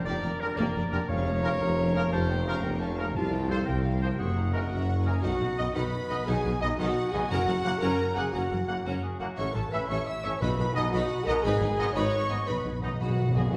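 Triumphant and heroic, this short cut from a cinematic adventure score rolls forward in 6/8, moving from a minor-tinged opening into a bright, major-key surge at 5.2 seconds. The lush violin sections carry the tune and a second line high above, bowed with vibrato, the melody shaped with a soft, expressive attack, while a very quiet viola section fills the middle and the cellos, double basses and a mellow tuba anchor the low end. French horns hold smooth, tight sustained chords with a very quiet trombone section beneath them, and a distant, roomy trumpet section punctuates with clear stabs. Woodwinds weave counterlines: a clear solo clarinet throughout, a distant cor anglais that drops in and out, and a pure, hollow flute that joins at 4.5 seconds. A bright, ringing harp spins arpeggios underneath, and timpani played with medium mallets return near the close for a fill at 12.5 seconds. The orchestra sits back in a reverberant scoring stage, giving the whole passage a grand, spacious sweep.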